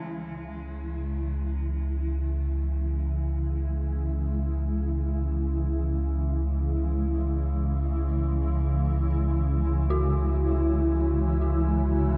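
A dreamy, reverb-soaked dark ambient drone in free time, this vast and ominous excerpt rests on a deep, rumbling drone with a filter sweep running through it, while a cloudy, blurred granular pad sustains its chords as it fades in and an eerie, warbling synth bell traces inharmonic arpeggios through chorus and tape echo from the background.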